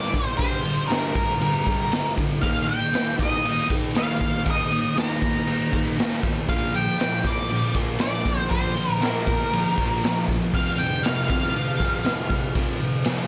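A raw garage drum kit sits up front, its punchy kick, medium-tuned snare and ride cymbal saturated and gritty, with a rolled-off top and the pumping sound of a bright stone room around it. This gritty garage rock fragment moves at 118 BPM in a straight 4/4, tuned to A4 = 437 Hz, and runs about 13 seconds as a single section cut from a longer piece. A thick, double-tracked fuzz guitar plays a picked, distorted riff from F2 to Eb4 with a warm tone. Above it, a dark octave-fuzz lead guitar, also picked and distorted, carries the melody between Bb4 and Bb5. A jingly tambourine, close and dry, stays in the background. The chords move from Gm to Eb5 at 2.4 seconds, Bb at 6.5 seconds and F5 at 10.5 seconds, all under a light reverb.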